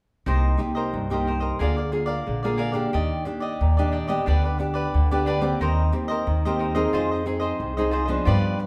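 At a steady 90 BPM in straight 4/4, this short cut from a longer samba and choro piece moves with an unhurried, yearning gait in C minor, tuned slightly high at A4 = 441 Hz. An acoustic upright bass anchors the low end, plucked pizzicato on steel strings with a woody tone that sits up front in the mix. Above it, a classical nylon-string guitar is fingerpicked in accompaniment, its close sound catching the occasional finger squeak. The cavaquinho adds a crisp, picked layer higher up, also placed close and present. All three enter together at 0.3 seconds and play through a single section that ends near 8.7 seconds, moving from Cm7 through Bb7/D, Ebmaj7, G/D and Cm7/Eb to Fm7, a bittersweet progression heard within a generous large-studio reverb.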